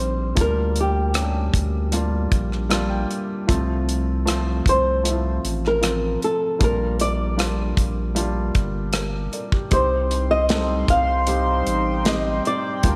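A straight 4/4 pulse at 77 BPM carries this tender, hopeful pop ballad in Bb major. A modern studio drum kit enters at 0.4 seconds on hi-hat, tight kick, rim click and a medium-tuned snare, sounding airy, polished and up front in a small acoustic room. Beneath it, a saturated sub bass holds deep, thick, sine-toned notes with a fast attack, sitting close to the listener. A thumb-plucked flamenco guitar carries the melody with a warm acoustic tone, while a concert grand piano accompanies with deep bass and short sustain and adds a brief fill early on. The harmony moves from Bb6/D through F/C and Bb6 to C minor, and at 9.7 seconds a chorused pulse-width pad arrives with shimmering, retro, bright sustained chords and a soft attack, all set in a moderate echo chamber reverb in this excerpt cut from a longer piece.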